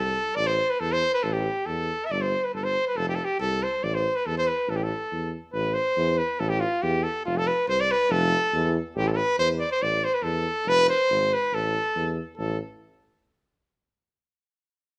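Bittersweet and virtuosic, this Balkan folk excerpt in A minor at 140 BPM in a straight 2/4 pairs a clear, up-front cornet melody, shaded with light vibrato and a soft attack in a classical manner, with a breathy tuba bass that scoops its notes with jazz-style vibrato, the two playing live together in a stone room whose reverb lingers for about a second across a short first section and a longer second one.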